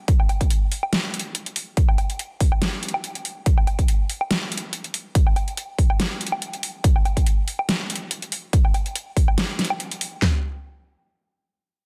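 Two layered electronic dubstep drum kits enter together at 0.1 s and drive this heavy, chaotic fragment at 142 BPM in a half-time 4/4 feel with a light swing on the sixteenths. The up-front main kit pairs a punchy kick and a huge snare with handclaps and toms, while a quieter second kit adds metallic hi-hats, its own snare and a woodblock. Both kits carry a tape-warm tone within light reverb and digital ambience under a dense, heavily limited modern master, and they fall away just past 10 seconds.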